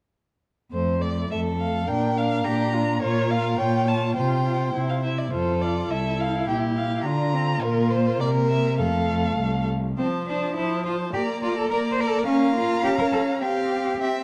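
Set in a straight duple metre of two beats to the bar, this quick classical-period movement for string quartet feels lively and graceful, and it is cut from a longer piece. The first violin carries the melody from 0.7 seconds with a warm, expressive tone, vibrato and touches of portamento, heard from a slight distance. The viola fills in the accompaniment beside it, while the cello anchors the bass with a rich, expressive sound that sits up front and a range that climbs well into the upper register. The second violin joins at 1.3 seconds with a smooth, even line beneath the melody. The harmony moves between major and minor colourings over suspended and dominant-seventh chords, and the opening material comes back at 10.0 seconds. A moderate recital-hall reverb and a dark production give the ensemble a soft glow.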